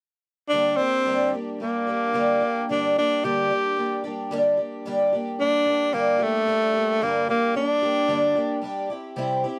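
Rock in a dusty, reflective mood, this short passage is cut from a longer piece and moves at a straight four. A breathy tenor saxophone carries the melody up front, its bright, whispered tone shaded with vibrato, soft attacks and scooped notes in an intimate pop style. Beneath it, a picked twelve-string acoustic guitar provides shimmering, octave-doubled accompaniment with a boxy archtop body, and finger squeaks come through. The harmony rests on G minor for most of the passage before shifting to C at 8.9 seconds, just after the saxophone stops at 8.6 seconds, leaving the guitar alone until 9.6 seconds. The sound is a dry, close 1970s-style studio recording with light reverb.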